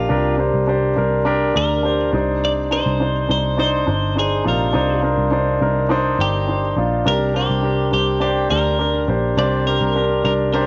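An up-front, intimate concert grand piano, with audible action noise and deep, long-sustaining bass, drives this earnest piano-driven pop passage in C minor at 103 BPM, moving from Gm to Cmadd9 at 2.1 s and back to Gm at 7.1 s, while a bright, twangy, compressed twelve-string electric guitar carries the melody and a dark, foam-muted, round picked electric bass holds the low end, the whole mix sitting in a moderate echo chamber reverb with a softened top end.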